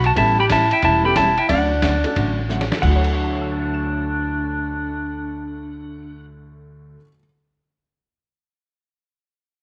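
A moderate echo-chamber reverb gives this short, down-home western swing clip a roomy, vintage glow, cut from a longer piece and rolling along with a lively swung 4/4 feel. Up front, a clean electric lap steel guitar carries the melody with fingerpicked slide lines, compressed and warm, while a raspy, growling clarinet with light vibrato and scooped notes sings a lower second line in jazz style. An up-front woody pizzicato upright bass anchors the bottom, and a muffled, pitched-down sampler-style drum kit with a thumpy kick, medium-tuned snare, hi-hat, ride and crash sits further back, dropping in a fill at 2.5 seconds before falling out at 5.4 seconds. Filling in the harmony, a dark, picked hollow-body jazz guitar and a jangly, detuned honky-tonk upright piano move from an A9 to a Dmaj7, with the bright piano ringing on until 7.2 seconds.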